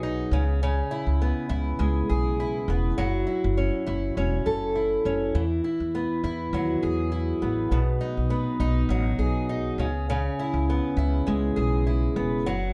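Acoustic pop with an easy-going, sunny mood at 101 BPM in 4/4, with a light sixteenth-note swing, cut from a longer piece. A fingerpicked twelve-string acoustic guitar sits up front, its octave-doubled strings giving a shimmering, concert sound as it moves through C#m7, F#m7, Eadd9 and B6 before returning to C#m7 at 9.8 seconds. Beneath it, a pizzicato upright bass with steel strings adds a woody, warm low end for the full 12.7 seconds, all framed by light reverb.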